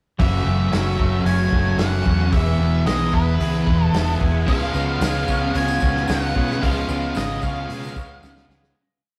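Wistful and blissful, this short, complete shoegaze and dream-pop rock piece moves at 112 BPM in a straight 4/4 over F#m7, E and C#7. A dark octave-fuzz lead guitar sings hook phrases above a thick fuzz guitar and a biting overdriven guitar, both strumming chords with whammy-bar dips, while a twangy, clean, compressed guitar picks arpeggios in the background and a round, punchy, foam-muted vintage bass drives eighth notes under a loose indie drum kit with a tight kick and rolled-off top. A second, bright, double-tracked overdriven guitar adds ringing chords from 4.5 s and a jingly tambourine joins at 4.7 s, before the rough, tube-saturated rehearsal-room sound, with its moderate stone-room reverb, begins fading at 6.6 s into a closing drum fill.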